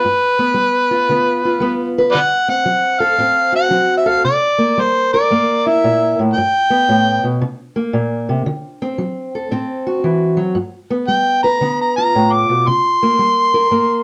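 A gritty, overdriven harmonica with vibrato, scooped notes and tongue slaps opens alongside a woody, boxy fingerpicked parlour guitar on old strings in this rollicking, soulful swung acoustic country blues, the harmonica dropping out at 7.4 seconds and returning at 11.1 seconds for a jazz-tinged solo over the guitar, both up front in a dark production with wet studio reverb.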